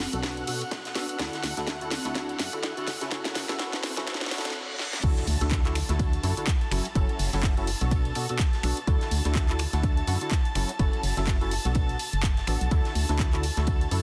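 A punchy, overdriven electronic kick drives this joyful 125 BPM piano house excerpt in D major, joined by a layered house kit with cracking snare and bright hats, a very quiet acoustic studio kit, and distant tambourine and congas that play only until 4.5 seconds. Alongside sit a hollow, organ-like FM bass, a mellow chorused organ stab riff with cassette tape and dub echo, and dark, woody bowed violins holding sustained chords, all three pumping to the kick. A filter-swept build-up with a reverse cymbal and riser drops at 5.0 seconds into an impact, over a Bm7, Dadd9 and F#m7 progression under a dense, heavily limited master.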